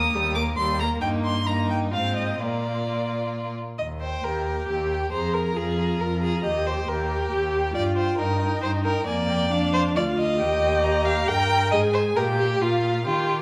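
A wet recital hall reverb, with a decay of about 1.6 seconds, surrounds this stormy, urgent excerpt from a quick classical-period movement for string quartet, set in Eb major at 135 BPM in a straight 3/4. Each of the four bowed parts is taken by a single player, and every one carries a rich tone shaped by vibrato, with the upper three parts sounding even. The first violin sings the melody from D5 up to Eb6 but sits distant in the blend, as does the viola, which supplies accompaniment between G3 and Bb4. The second violin's line, with its smooth top, sounds up front alongside the cello, whose focused bass moves between D2 and Eb3. The harmony leans on Eb and Bb chords, passing through Fm7/Ab before the opening section gives way to a longer second section at 3.8 s, and near the close it drops to a brief unharmonised moment at 11.7 s before Gm/Bb and a bare Bb5 end the excerpt.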